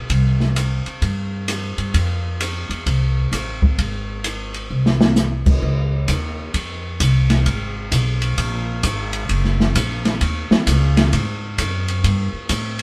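Big band swing with a brassy, swinging mood, cut from a longer piece. A woody, thumpy pizzicato upright bass with gut strings and an up-front open jazz kit share the spotlight: the kit has dark cymbals, a medium-tuned snare, a boomy kick and a rolled-off top. A drum fill at 4.7 s leads into a new passage at 5.6 s, and the band plays live together in one moderate stone room.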